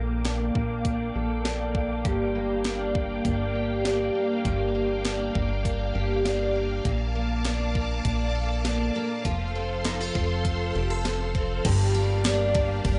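Blissful and ethereal, this dream pop excerpt moves at 100 BPM in a straight 4/4, with a shimmering, octave-doubled picked twelve-string acoustic guitar up front, playing arpeggios through analog chorus, delay and a low-pass filter. Vintage string-machine violas hold bright, slow-attack chords with ensemble chorus, while a punchy, dark, plucky analog bass sounds from the very start and a clean 12-bit drum machine enters at 0.2 seconds, adding a thumpy kick, medium-tuned snare, hi-hat, ride, crash and tambourine. The harmony cycles through Bbmaj7, Gm7 and F under a filter sweep running until 11.7 seconds, when a brief new section begins on Gm7, all captured in a dry, gritty recording with transformer saturation and a modest small-room ambience.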